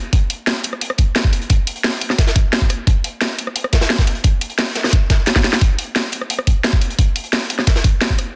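Three drum layers start together at 0.1 seconds in this aggressive, futuristic drum and bass excerpt, built on a straight 4/4 pulse. Up front, a knocking electronic kick drum carries a layered, produced character shaped by a small room. Beside it, an overdriven electronic kit supplies a cracking snare, rim clicks and bright hi-hats. Underneath sits a crunchy acoustic breakbeat kit, dark and gritty with a medium-tuned snare, saturated tone and a rolled-off top, its hats, snare and room thinned by high-pass filtering. A brief drum fill arrives between 5.3 and 5.6 seconds before the groove carries on to the cut, all under light reverb and a dense, heavily limited modern master.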